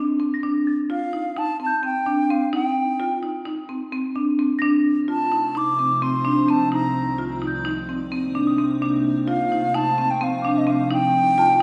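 A wet recital hall with a 1.6-second reverb surrounds this short chamber piece, cut from a longer work, a restless, urgent stretch of contemporary instrumental music in 9/8 at 258 BPM counted in eighths, set in C dorian. A woody, percussive marimba played with hard mallets opens at 0.0 seconds with arpeggios and sits up front, and from 0.3 seconds a small celesta adds a delicate, bell-like texture high above. From 0.9 seconds a bright wooden flute carries the melody with vibrato and a soft attack, its airy tone placed close to the listener. At 5.2 seconds an icy, crystalline glass pad slips in beneath with slow-blooming sustained chords, thickened by chorus and its own reverb. The harmony cycles through Dm, Cm69, Eb and Cm before settling over a C bass with Dm7/C, Ebmaj7/C and Cm7.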